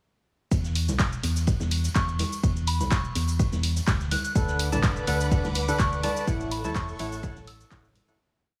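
A four-on-the-floor electronic kick, punchy and tape-warm, drives this euphoric, uplifting piano house piece at 125 BPM in 4/4, with a light 16th-note swing. A dry, programmed analog drum machine adds handclaps, hi-hat and shaker, while a bright, saturated layer of tambourine and congas brings soft hand percussion. Further back sits a looped breakbeat from a big acoustic rock kit, dark and smooth with a rolled-off top, its ride cymbal and medium-tuned snare both high-passed. Underneath, a hollow, organ-like FM bass plays a dotted rhythm up front, pumping against the kick. From 2.0 seconds a soft, pure synth bell adds short, gentle phrases coloured by chorus, phaser and tape echo. At 4.4 seconds a mellow, percussive organ stab arrives with dotted-rhythm chords alongside a shimmering, vintage string-machine pad of violins, before the whole groove fades out from 5.6 seconds, set in light small-room ambience.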